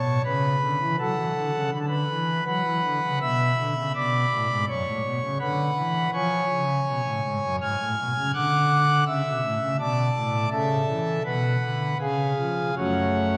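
Dark and grave, this classical chorale-style excerpt for solo pipe organ moves at 82 BPM in a straight 3/4, its thick, romantic foundation stops sitting up front and spanning F#2 to G#6 through a wet church reverb with vinyl crackle, as the harmony travels from F#m through Bm, C#7 and Dmaj7 before settling back on F#m.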